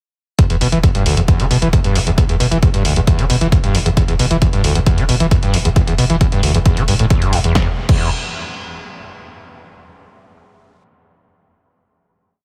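A four-on-the-floor electronic kick drives this intense peak-time techno piece from 0.4 seconds, layered and punchy. Alongside it, an analog drum machine supplies programmed closed and open hats, a backbeat snare and crash cymbal, with sidechain pumping on its hats and cymbals. Up front, a screaming sawtooth acid line plays a squelchy, resonant 16-step riff full of accents and slides and a filter sweep, thickened with distortion, lush chorus, delay and sidechain pumping. Beneath it, a round sine sub bass sits in the background, an overdriven, low-passed rumble filling the gaps between kicks, with sidechain pumping. Both drum parts carry a small-room character, while the mix has light reverb and a heavily compressed, radio-like sound. The groove runs until 7.6 seconds, and a final note then rings out to 9.3 seconds.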